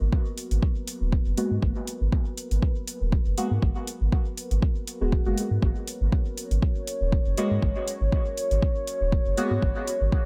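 Dub techno with a cavernous, deep mood, where a dark, detuned ambient pad holds a lingering chord through chorus and reverb, a round, soft sub bass pumps beneath it alongside an up-front, tape-warm kick, metallic hi-hats tick in the background, and a mellow, wave-folded chord stab enters at 1.4 s, drenched in phaser, cassette grit and dub echo.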